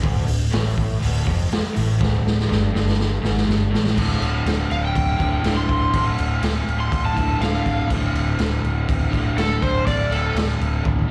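Blues rock in the power-trio mold with a southern rock lean, this gritty, smoky excerpt moves at 122 BPM in a straight 4/4 in D minor, cut from a longer piece and heard as a live gig through the venue's PA with club reverb. A raw garage guitar, overdriven, picked and double-tracked with slapback echo, drives a low riff that opens on a D5 chord. Beneath it, a vintage fingered electric bass sounds dark, round and punchy, its foam-muted tone giving the low end a solid, amped weight. The raw garage drum kit is up front and saturated, with a boomy kick, medium-tuned snare, hi-hat, crash and toms, a small-room character and a rolled-off top, and a drum fill arrives from 2.0 to 4.0 seconds. At 4.7 seconds an overdriven slide guitar enters with a high, fingered solo line washed in plate reverb and analog delay, carrying on until 10.4 seconds.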